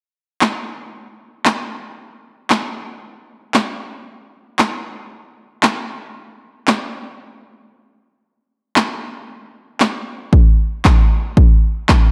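Summery and upbeat, this short cut from a longer pop piece moves at 115 BPM in a straight 4/4 feel. A deep house drum kit carries it from 0.4 seconds, its electronic, layered sound built from handclaps, kick drum and snare drum. The kick and snare are punchy and sit up front, with a tape-warm color on the kit. A break arrives at 7.2 seconds, and a new section begins at 8.2 seconds. The dark production adds light reverb and a digital ambience around the drums.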